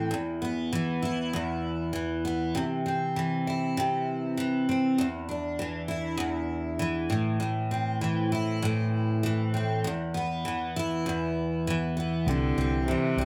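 A wet studio ambience surrounds this heartfelt, sunny pop excerpt in C major at 99 BPM, where a bright, full-bodied, double-tracked steel-string acoustic guitar sits up front with plate reverb, picked through chords moving from E5 to C, Dsus2/E and Am. At 12.3 seconds a rich, smoothly bowed solo cello with vibrato joins as a second line, treated with tape echo and plate reverb, alongside a dark, round, punchy muted electric bass holding a low C. The clip ends at 13.2 seconds.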